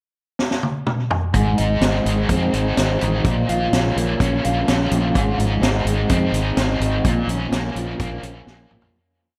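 A vintage drum kit opens with a fill at 0.4 seconds, its high-tuned snare, punchy kick, hi-hat and toms sounding mid-forward and up front in a studio room, with a rolled-off top and a touch of tape echo. At 1.3 seconds the overdriven electric guitar and fingered electric bass enter together, setting this short psychedelic rock piece into a dark, hypnotic groove at 126 BPM in Bb minor. The double-tracked guitar plays picked arpeggios coated in harmonic tremolo and tape echo, while the round, foam-muted bass drives steady eighth notes underneath. The chords move between Ab and Bbm as the drums hold a pop groove, and the echo-heavy mix sits in light reverb with a warm cast. A fade-out begins at 7.0 seconds, and a last drum fill runs from 8.5 to 8.9 seconds.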